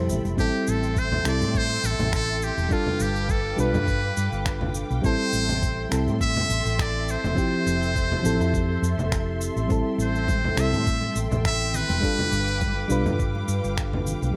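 A soft, round FM electric piano opens this wistful sunset chillout excerpt in A minor, with chorus, tape echo and a vintage 12-bit sampler grit, joined from the start by a distant, bowed symphonic string section holding smooth sustained chords and a dark, hollow-body fingered electric bass. At 0.1 seconds a gritty, sampler-style layer of electronic shaker, congas and finger snaps sets a relaxed 103 BPM groove in 4/4 with a gentle sixteenth-note swing. From 0.4 seconds a thumpy, compressed electronic kick drum grounds the beat, and a trumpet with metal mute carries the melody up front: brilliant yet thin and buzzy, with light vibrato, scooped notes and tape echo trailing its phrases. The harmony drifts smoothly through Am7, G7 and Fmaj7, and a very quiet acoustic conga part returns at 10.3 seconds to add live-room texture. Light reverb and digital ambience give the whole piece a mellow, tape-tinged glow.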